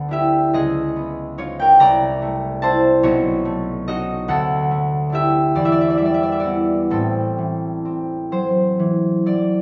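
A solo concert harp, up front, ringing and fingerpicked, sits in a wet recital-hall reverb as it moves in a rubato 6/8 from a D6/9 through C#13, C13, B9, Dadd9 and Em7 to an A minor 6 by 6.9 seconds, giving this short classical passage, cut from a longer piece, a wistful, mysterious air with a dark, softened top end.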